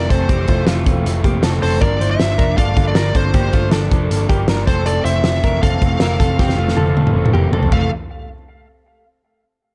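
Jangly indie pop at 158 BPM in F major, bright and nostalgic, cut from a longer piece. A smooth overdriven lead guitar carries the melody through an analog delay, while a raw garage guitar with overdrive fills in the accompaniment and a direct-recorded clean electric guitar, compressed and treated with analog chorus, plays arpeggios. Underneath, a vintage muted picked electric bass sits round and punchy, foam-muted and amped. The loose indie drum kit is up front, with a fat snare, punchy kick, dark cymbals and a pumping room sound, and it plays a fill from 6.4 to 7.9 seconds. The harmony moves from Fmaj7 to Gm7 and back, then the band drops out at 7.9 seconds, and the whole sits in a dark, studio-reverb production.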